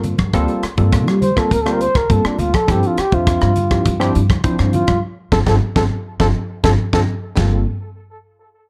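Electric jazz fusion with an intense, nocturnal mood, moving at 102 BPM in a straight 4/4 in G dorian, this short cut from a longer piece sits over Gm11 and Dm9 chords. A trumpet with a bucket mute carries the melody as a solo from the start until 7.4 seconds, its veiled, breathy tone with soft attacks and scooped notes sounding almost whispered and intimate, trailed by tape echo. A worn, slightly out-of-tune tine electric piano comps beneath it through analog chorus and adds a fill from 6.5 seconds. A woody pizzicato upright bass with steel strings anchors the low end, while a tight funk drum kit stands up front with a high-tuned snare, tight kick, hi-hat, ride and rim clicks. Close, dry congas played with hard hands sit in the background, and the band hits an accent from 5.0 seconds in a dark production with light reverb.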